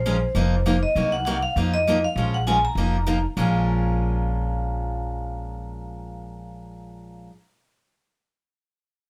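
Hard-mallet vibraphone carries the melody in this fiery, swinging fragment of acoustic string swing, its metallic, ringing tone made airy by plate reverb and a shimmering motor vibrato. Up front, a woody, thumpy upright bass is plucked beneath a picked steel-string acoustic guitar whose fresh strings sound crisp and clear as it picks through chords such as F7sus4, Cm7b5 and Bbm7, and the guitar joins at 0.1 seconds. A light reverb surrounds the trio, and the passage moves into a new section at 3.4 seconds before the cut at 7.3 seconds.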